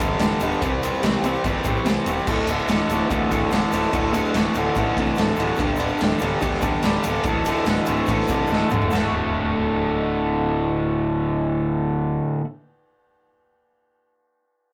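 A bright, overdriven, double-tracked electric guitar sits up front, playing a swaggering riff over G5/D, C5 and D5 power chords in D mixolydian. This is a raw garage rock cut from a longer piece, at a straight 145 BPM in 4/4. A growling picked bass adds overdriven low end beneath it, while a gritty acoustic kit with a punchy kick and pumping small-room sound plays alongside a grainy, very quiet egg shaker; after a drum fill at 8.5 seconds, the drums and shaker drop out, and the guitar and bass continue over a D chord until the guitar ends at 12.4 seconds, all in a rough rehearsal-room sound.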